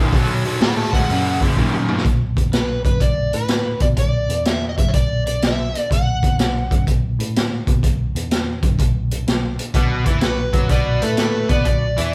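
Blues rock and southern rock in a power-trio vein, this heavy, gritty excerpt swings its eighths at 125 BPM in 4/4, in B minor. A raw garage drum kit sits up front with a boomy kick, a medium-tuned snare, hi-hat and toms, its saturated, rolled-off sound carrying a drum fill from 1.6 to 2.1 seconds. Beneath it, a vintage muted picked bass stays dark and round in the background, holding the low end from the first moments to the close. A double-tracked, overdriven semi-hollow guitar plays a bright, up-front riff in two bursts, one at the start and another from 9.7 seconds, joined at those same moments by an overdriven tonewheel organ whose thick sustained chords turn through a slow rotary speaker in the background. Over this, an overdriven slide guitar sings a fingered melody, opening with a solo over the Bm9 and F#7b9 changes before settling on B minor, all heard as a band playing live in one room with light reverb.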